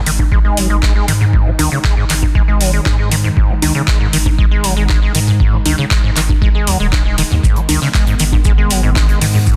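A dense, heavily limited mix with light reverb opens this raw, gritty acid house excerpt in G# minor at 118 BPM, where an overdriven electronic kick pounds alongside a booming analog drum machine of congas, handclaps and metallic hi-hats, both re-recorded in a small room. A rubbery, resonant sawtooth acid bass with a filter sweep, overdrive and tape echo plays a riff over a thick, saturated sine sub bass that pumps with the sidechain, while a warbling, nostalgic lo-fi pad of detuned, ring-modulated chords sits in the background on a G#5 chord. At 7.4 seconds a crisp acoustic kit enters behind them, adding hi-hat, shaker and a high-tuned, gritty snare.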